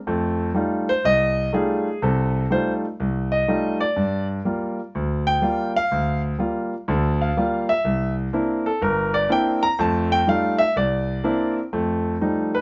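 Solo jazz piano swings at 124 BPM in 4/4 with a warm, swinging mood, its eighth notes carrying a firm swing feel in F mixolydian. A concert grand carries the whole performance alone from 0.1 to 12.6 seconds, ranging from a low G1 up to Bb5. The instrument sounds natural and up front, with a deep bass that gives the lower chords real weight. The harmony moves from F9 to Gm7 and C9, then alternates between F9 and C9 before settling back on F9 at 11.7 seconds. A small room's reverb adds a short, wet ambience around the piano. This brief passage is taken from a longer piece, and the tuning sits slightly under standard pitch at A4 = 438 Hz.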